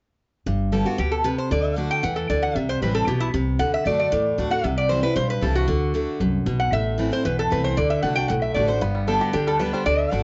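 Picked steel-string acoustic guitar and upright bass open this joyful, virtuosic bluegrass excerpt together at 0.5 s, driving a straight 4/4 at 230 BPM in G major. The dreadnought guitar sits up front with a full-bodied, fresh-stringed ring and an audible finger squeak, while the pizzicato upright bass underneath is woody and growly, thumping through the low register. Almost at once a lap resonator guitar takes the melody, played with fingerpicks and slide, its metallic, nasal voice placed forward and bathed in plate reverb. The chords move from G through D, C and Am before landing back on G at 8.8 s, where a twangy, percussive bluegrass banjo slips in softly alongside the lead, also touched by plate reverb. The whole recording carries a worn, warbly cassette character, with wavering pitch drift, a dulled top end, and a moderate studio room around the players.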